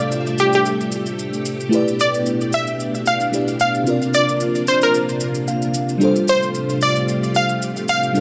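A 4/4 amapiano groove at 112 BPM, swung on the 16ths, drives this late-night, hypnotic excerpt in G dorian, carried by an electronic, overdriven shaker beneath an up-front analog pluck melody that sounds round, detuned and bright with chorus and delay. A crystalline, sparkling FM electric piano accompanies with chorus and adds a fill from 5.2 to 6.0 seconds, while a lush, vintage string machine ensemble holds sustained chords through G9sus4, A9sus4 and C9sus4, and a barely audible downlifter passes between 0.1 and 1.7 seconds. The mix sits in light reverb.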